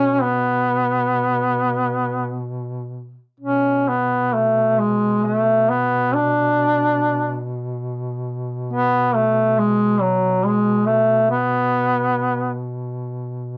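Longing and mournful, this Caucasian folk lament in free time and B dorian sets a warm, up-front duduk melody, rich with vibrato and scooped notes yet distant and roomy, over a mellow second duduk holding a low B drone with a soft attack and smooth top. Both parts carry a cassette tape character from a home recording with moderate studio reverb, and the melody falls away at 12.6 seconds while the drone sustains to 13.6 seconds in this short cut from a longer piece.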